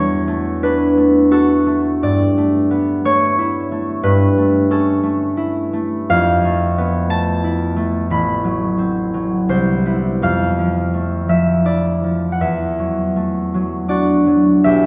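A solo concert harp carries this gentle, wistful classical piece, its bright, ringing strings thumb-plucked and sitting up front. The harp spans A1 to B5, playing in 3/4 with a rubato feel that drifts between roughly 77 and 93 BPM. The harmony moves through lush, colourful chords, opening on D69/E, passing through G69, A9/G and Fmaj7#11, and settling onto E9sus4 at 12.4 seconds. A wet recital hall reverb surrounds the instrument, placing the listener further back in the room. The passage is cut from a longer piece, with the harp sounding from the start until 14.9 seconds.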